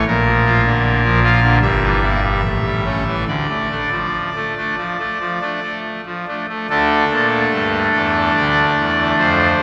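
A solitary pipe organ opens on its trumpet stop, the sound brassy and bright with a chiff at the start of each pipe and a baroque voicing that sits up front. This short fragment of a longer classical work unfolds as a grave, dark chorale in 4/4, its pulse pushed and held with a rubato feel. The organ spans from G1 up to F5, moving through Bb, a diminished chord over G and an A7 before settling on D minor at 3.3 seconds. At 6.7 seconds a new passage begins on a bare D fifth, carrying through to the cut at 9.6 seconds. A long cathedral reverb of 4.8 seconds lets each chord hang and blur into the church space around it.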